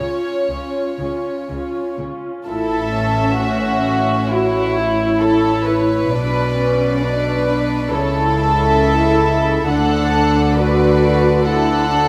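Tender and warm, this slow romantic movement for string orchestra moves at 67 BPM in 4/4 with a rubato feel in A major, and it is cut from a longer piece. The violins carry a pure, floating melody, while a second violin line sits up front beneath it, both bowed sul tasto with a soft attack. The violas add a dark, woody accompaniment with vibrato and a lush, smooth top. Cellos and a clear, chamber-sized double bass section anchor the low end with gentle sul tasto bowing. A brief opening passage gives way at 2.5 s to a longer section that drifts through A, B minor with an added ninth, A over C sharp and D. A moderate scoring-stage reverb with a 2.0-second decay gives the ensemble a spacious bloom.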